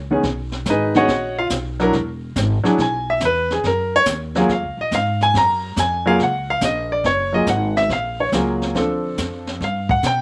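Jazz piano trio in a swing feel, with a warm, sophisticated mood, taken from a longer piece. A clear, intimate grand piano sits up front and takes a solo across the full ten seconds, its short sustain and audible action noise giving the playing a natural, close-up presence. A pizzicato upright bass with steel strings supplies a woody low end, while a brushed drum kit with a high-tuned snare and boomy kick rounds out the group, its top end rolled off and placed mid-forward in the balance. The harmony moves through B69, E and F#maj9, then turns toward Dm7 at 8.8 seconds and G at 9.6 seconds. The sound is dry, with little reverb, keeping the trio direct and present.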